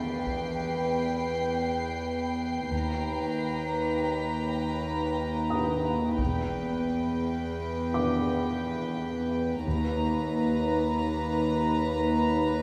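A symphonic cello section, bowed sul tasto with a soft attack and a floating, distant quality, holds the bass beneath a pure, up-front symphonic violin section in this uneasy, tense suspense film-score excerpt in free time, while a dark, mellow felt-muted upright piano and an intimate chamber violin section with a smooth top add texture, close, dry taiko hits from hard sticks land at 0.3 and 6.2 seconds, a rich studio double bass section joins in the background at 2.7 seconds, and the harmony moves between Em and Bmaj7/D# in a wet concert-hall reverb.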